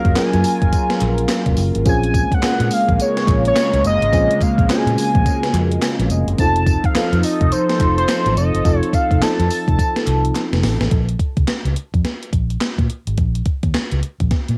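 Bouncy and slick, this new jack swing excerpt in Bb minor moves at 106 BPM in 4/4 with a 62% swing on the sixteenths, drifting from Gbmaj7 through Bbm7 and F7 before settling on Bbm at 10.9 seconds. Up front, a bold, retro octave-doubled lead carries the melody, its detuned sawtooth and triangle tone edged with ring modulation and colored by chorus and phaser. Beneath it, a glassy FM electric piano with a bell-like attack comps through the first section and adds a fill at 5.5 seconds, while a swirling, detuned sawtooth pad holds sustained chords through phaser and chorus. The gated 80s digital drum machine is thumpy and sampler-style, with a gated-reverb snare, handclaps, hi-hat and tambourine, plus a drum fill leading into the last stretch. A dark, round, foam-muted fingered electric bass punches along underneath, and a very quiet, crisp group handclap adds a faint human layer. When the lead, keys and pad drop out, drums and bass carry on alone to 14.6 seconds, all wrapped in light reverb and the character of a home cassette recording.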